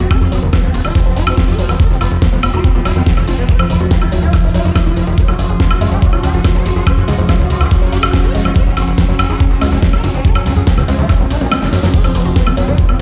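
Intense and hypnotic, this psychedelic trance excerpt drives at 142 BPM in straight 4/4. An up-front, knocking electronic kick and fat, saturated analog bass anchor a big-room drum kit with a huge snare, while a woody, wave-folded pluck riff with cassette-tape grit and digital delay and a swarming, aggressive rave lead with phaser and tape echo all pump against the kick over a resonant, overtone-sweeping drone. An airy, breathy pad enters at 5.5 seconds, the kick drops out for a drum fill at 11.5 seconds, and the mix sits in a large studio reverb as if blasted through a big sound system in a bare room.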